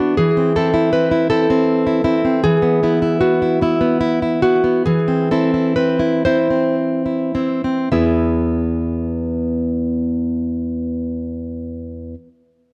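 The sound is dry and close, with the intimate air of a small room and the character of a 1970s studio recording. This romantic piece for solo nylon-string guitar is sunny and nostalgic, set in E major in 3/4 and played with a flexible rubato that ranges between 49 and 81 BPM. The fingerpicked guitar sits up front, full-bodied and deep in its classical voice, with the warm ring of fresh strings and a touch of slapback echo, spanning E2 to E5. Over the opening passage it moves from Am/E to E and then to Eaug, slowing down from 1.3 to 7.9 seconds before settling on E as a new section begins. Cut from a longer piece, the music ends at 12.1 seconds.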